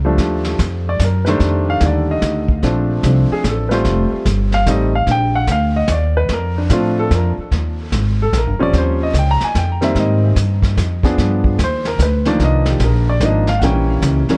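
Sophisticated and playful, this short jazz piano trio passage swings in a lilting three, cut from a longer piece. The grand piano carries the melody as a solo throughout, its short-sustained tone up front and touched with tape echo, moving through rich extended harmonies that shift to a new key center at 7.5 seconds, where the second phrase opens. Beneath it, a pizzicato upright bass with gut strings gives a woody, thumpy pulse, sitting close and prominent in the mix. A vintage brush drum kit enters at 0.2 seconds, its brushed snare, hi-hat and tight kick heard in a small, pumping room with a rolled-off top and a gritty sampler texture. Light reverb and a dark, warm production bind the trio together.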